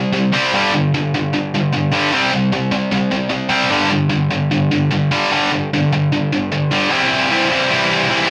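Punk in C major at 150 BPM, this short, rebellious and upbeat cut features a lone electric guitar playing from 0.0 to 8.3 seconds, its bright, distorted and picked tone double-tracked and placed up front. The guitar moves between C5 and G5 chords before settling onto a full C chord at 6.9 seconds, spanning G2 to E4. A moderate studio reverb gives the tight playing a touch of room.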